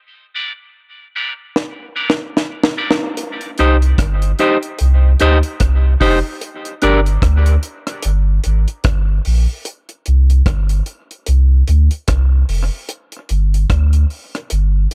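A round, sine-toned sub bass dominates this hypnotic, spacious dub reggae fragment, arriving at 3.6 seconds with a deep, mellow weight, a fast attack and long sustained notes sitting up front. The piece opens at 0.3 seconds with a clean, picked electric guitar accompaniment, its warm tone shaped by vibrato, a high-pass filter and tape echo. A deep reggae drum kit enters with a fill at 1.6 seconds and then settles into hi-hat, rim click, a high-tuned snare and a tight kick, all sounding dry, dark and smooth. The music moves at an unhurried 74 BPM in 4/4 with a swung sixteenth-note feel, set in C minor as the harmony shifts from Gm to Cm and back before landing on bare C5 and G5 chords. A small room ambience gives the close, up-front mix a modest sense of space.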